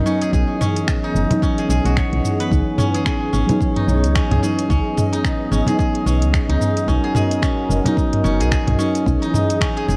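Meditative and earthy, this 10-second organic downtempo excerpt in C# dorian moves at 110 BPM with a swung 16th-note feel, as a woody, round FM bass sits up front beneath muted felt-like synth keys with chorus and delay, a smooth detuned analog pad carrying Emaj7, C#m7 and Bmaj7 chords with 12-bit sampler grit and sidechain pumping, silvery fingerpicked steel-string zither arpeggios ringing through delay, a barely audible bronze singing bowl, an afro-pop kit of finger snaps, metallic hats, shaker and toms, a deep electronic kick entering at 0.3 seconds and a close, dry cajon in the background, all under light reverb and a worn, warbling cassette-tape drift.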